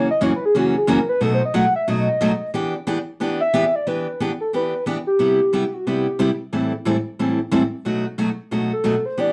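Fiery yet bittersweet, this fast swinging jazz excerpt in E minor moves at 181 BPM. A soft, round sine lead with chorus and vibrato carries the melody from the start, falls away at 6.4 seconds and briefly returns at 8.7 seconds. A bright, up-front picked steel-string acoustic guitar accompanies throughout over chords such as B7, Em7 and Cmaj7, all set in a wet studio reverb with a dark, warm production.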